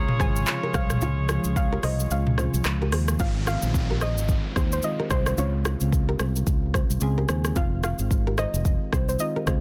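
Afrobeats with a breezy, sunny mood, where a soft, round pluck carries the melody over mellow electric-piano-like synth keys, a fingerpicked nylon-string guitar riff and a punchy fingered electric bass, while an up-front afro-pop drum kit with a deep kick, metallic hats, handclaps, rim clicks, shaker and toms drives a swung groove, a clear horn section adds a second line and an ethereal pad holds chords in the opening seconds, the kick briefly drops out at 2.1 seconds, and a downlifter enters at 3.2 seconds in a dense, dry, heavily limited mix.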